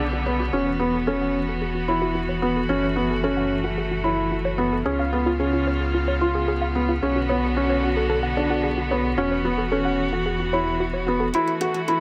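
A straight 4/4 pulse at 111 BPM carries this moving, intimate piece of piano and strings electronica in F# minor, cut from a longer track. A felt-muted upright piano plays a soft, mellow riff with short sustain and a touch of delay, while a bowed string quartet, one player per line, holds rich, smooth chords with vibrato that sound both up front and distant. Behind them, a warbling, lo-fi pluck built from detuned triangle and sawtooth tones with a noise layer spins arpeggios through chorus and delay, and a filter sweep runs across this sound until 11.3 seconds. A deep, rumbling detuned saw bass with a beating, dark tone sustains underneath until 11.3 seconds, when an overdriven electronic hi-hat with metallic, low-passed hats enters at the very end. The harmony moves through Bmadd9, Esus2, F#m7 and C#7, all set in a moderate recital hall reverb blended with a small room.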